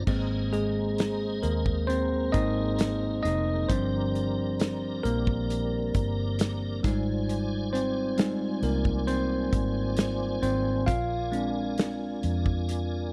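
A bell-like, bright tine electric piano leads this emotional, longing pop ballad, playing solo up front from 0.1 seconds to the close at 13.1 seconds. Beneath it, a piping tonewheel organ holds sustained chords through chorus vibrato and a slow rotary speaker, with audible key click. A dark, foam-muted fingered bass with a round, amped tone and a natural country drum kit with a punchy kick, medium-tuned snare and dark cymbals complete the sound, captured as a dry, close 1970s-style studio recording cut from a longer piece.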